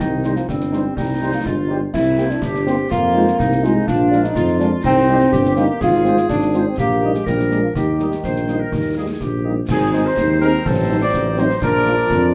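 A spirited, festive wind-band march in 2/4 opens with a clear euphonium and vintage-toned woodwinds carrying second lines over a mellow, roomy tuba bass with light vibrato and a snare, bass drum and dark-cymbal kit, as a smooth-topped trumpet section takes the melody over background French horns, until the euphonium drops out at 9.4 s and a very quiet but present trombone section holds sustained chords from 9.7 s, all in a moderate large-studio reverb, cut from a longer piece.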